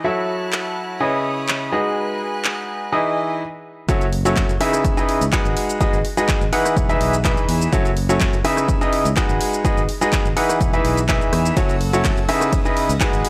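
A brilliant grand piano riff, up front with audible action noise and tape echo, opens this soulful, energetic 125 BPM piano house cut in F# dorian over sustained chords from a bowed, earthy chamber violin section with light vibrato, both pumping with sidechain, as a layered garage drum kit of handclaps, hi-hat, ride cymbal, rim click and shaker joins at 0.5 seconds; after a brief stop at 3.4 seconds, the drop at 3.9 seconds brings in a punchy, tape-warm electronic kick in studio reverb and a growly, overdriven fingered electric bass pumping beneath the F#m7, C#m9, G#m7 and Emaj7 changes, all within a dry, gritty hardware sound with transformer saturation.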